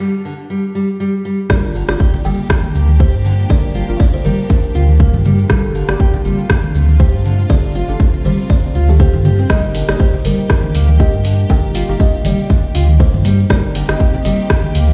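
Earthy and spiritual, this afro house excerpt opens with a full-bodied, fingerpicked nylon-string guitar playing arpeggios alone with delay and sidechain pumping before the drop arrives at 1.5 seconds. From there a punchy, up-front electronic kick and a tape-warm afro-pop kit with metallic hats, rim click, shaker and toms drive the groove alongside very quiet hard-hand congas. A deep, round sub bass, dark sul tasto strings, a soft detuned chord stab with chorus tucked in the background, and a woody, buzzing kalimba melody with delay all ride over chords moving from Gm7 through F6/G and Eb/G to Cm7/G, while stone room reverb gives the sound of a big system in a bare space.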